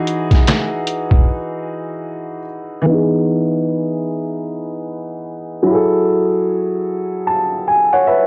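A lazily swung 4/4 groove opens this short, mellow lo-fi hip hop fragment, carried by a gritty, compressed trip hop sampler-style drum kit whose pitched-down, thumpy kick, medium-tuned snare, hi-hat and finger snaps sit up front through a cassette tape haze. The kit drops away at 1.3 seconds, just after a deep, sine-toned sub bass with octave slips in briefly beneath it, full and sustained but kept well in the background. A clear, woody upright piano with a smooth, vintage character and long sustain plays accompaniment throughout, filtered and softened by cassette tape as it moves through dreamy Emaj9, Emaj7 and F#m9 chords. From 2.9 seconds a filter sweep colors the piano, which closes on a fill starting at 6.9 seconds. A moderate studio reverb and a home-cassette recording quality give the whole fragment a mellow, dreamy feel.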